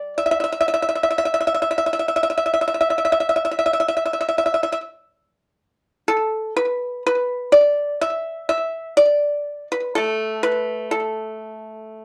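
A solo pipa opens the recording, bright and percussive, played with fingerpicks and set up front in a close, dry 1970s-style studio sound. This is traditional Chinese plucked-string music in the E yu mode, contemplative and elegant, moving at a free, rubato pace around 62 BPM in 4/4. The pipa ranges from G3 to E5, and a slapback echo clings to its acoustic tone, while a light reverb gives the room a little air. At 6.1 seconds the music turns to a new section that carries on until the cut at 12.0 seconds, as this short passage is taken from a longer piece.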